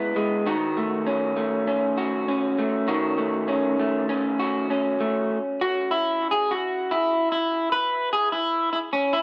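This indie pop excerpt feels lonely and hazy, moving at 99 BPM in 4/4 with a 16th-note swing. A single electric guitar, fingered through a small old amp, carries everything as a solo from 0.0 to 9.2 seconds, ranging from C#3 to B4. Its tone is dark, slightly broken-up and lo-fi, compressed and placed up front, colored by subtle chorus, analog delay and a warbly pitch drift that adds to the hazy feel. The opening section leans on a D#m7b5 chord from 0.5 seconds. At 5.3 seconds a second section begins, where the harmony drops away and the guitar plays a clean solo line. Light reverb surrounds the guitar, and the tuning sits at A4 = 441 Hz.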